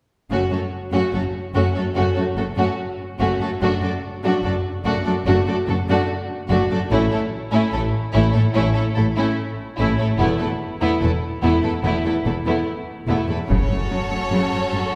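A wet concert-hall reverb surrounds this dark, dramatic orchestral film cue, cut from a longer piece and moving at 73 BPM in F# minor. Bowed string sections with vibrato carry the opening: a lush, up-front viola section plays the accompaniment under a violin section on a second line, while the cellos and a distant, even double bass section hold the low end through F#m, A and Esus4. At 13.5 seconds the harmony returns to F#m as an intense chamber violin section takes the melody, a taiko ensemble enters with heavy sticks, and a huge, bright impact sounds in the background.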